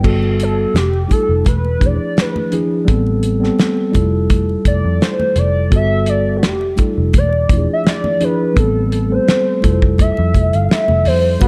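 A dark, lightly reverberant production frames this smooth slice of lush 1970s-style soul, with a gentle swing on the sixteenths. A hollow, woody square-wave synth lead carries a solo from 0.4 seconds, colored by chorus, phaser, vibrato, portamento and slapback echo. Beneath it sit a mellow tine electric piano moving through rich ninth chords, a round, punchy, foam-muted picked bass, a cloth-damped, thuddy drum kit with a fat snare and rolled-off top, and ringing congas in the background, joined at 11.4 seconds by a soft-attack trombone section stabbing in with a shimmering triangle.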